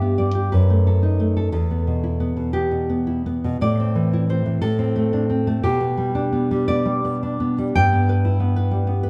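A full-bodied, thumb-plucked nylon-string guitar sits up front with audible finger squeak, playing an intimate, melancholic romantic piece for solo classical guitar in G major at 58 BPM in a rubato 6/8 of uneven beats, moving from G through B7/F#, Em, Am and D5/A to G/B and Em/G across a span from E2 to G5, all carried by a moderate concert hall reverb in this 9.1-second fragment of a longer work.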